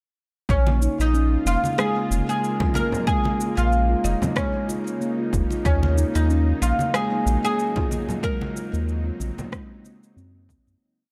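Organic downtempo in Bb minor at 93 BPM, this short, complete piece carries a warm, meditative mood over a lightly swung 16th-note groove that runs from 0.5 seconds to the end, moving from Bbm7 to Ebm7 at 5.7 seconds. Up front, a woody, plectrum-plucked fretless oud with doubled strings spins an arch-shaped motif through a digital delay, while a round, sine-like sub bass with tube saturation anchors a dub-style line beneath it. A punchy but soft overdriven electronic kick and a layered shaker and rim click, also overdriven and set in studio reverb, form an organic beat alongside ringing, live-room congas. A steel tongue drum struck with rubber mallets repeats a pure, smooth 32-step arpeggio pattern, and from 1.0 seconds a bright, tense, string-like drone holds sustained chords with vibrato, built-in reverb and sidechain pumping. The dark production sits in light small-room ambience, and the whole piece fades out from 7.4 seconds to its close at 10.8 seconds.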